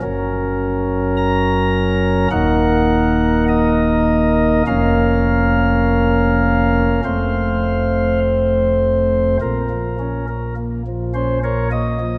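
A soft pipe organ, drawn on its flute stops, opens on a Gb chord and carries this dark, solemn chorale-style classical piece alone from 0.0 to 12.2 seconds. At a slow 51 BPM in a straight 4/4, the harmony moves through Ebm, Bbm/F and F before settling on Bb minor at 9.4 seconds, where a new section begins. The baroque voicing spans from a deep Eb1 up to Bb5, giving the warm tone both weight and reach. The organ sits up front, yet a wet concert hall reverb with a 2.1-second decay surrounds it, lending the chords a spacious, reverent glow. This is a brief cut from a longer work, tuned slightly high at A4 = 441 Hz.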